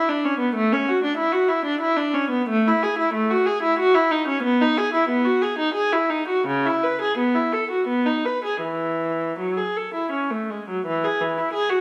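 A lone bowed viola opens this serene, flowing fragment of a baroque-style classical suite movement in triple time, its reedy gut-string tone shaded with light vibrato and period-style phrasing under a gentle rubato, heard up front within a moderate recital-hall reverb.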